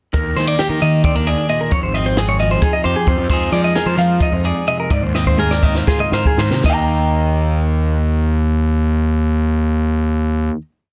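In a straight 7/8 at 225-267 BPM in eighths, this short, wistful and intricate math rock and midwest emo piece in Eb major pairs a dark, scooped clean electric guitar ostinato with a second clean guitar playing syncopated fingerstyle arpeggios through slapback echo, a bright, fuzzy overdriven picked bass riff, and a dry, punchy compact cocktail drum kit with a high-tuned snare, moving through Ebmaj7, Dbmaj9#11, Fm7 and Ab69 as it slows from 3.3 seconds and the drums fill from 5.1 seconds before stopping at 6.8 seconds, leaving guitars and bass to ring out a final Eb chord in light reverb under a dense, heavily limited master.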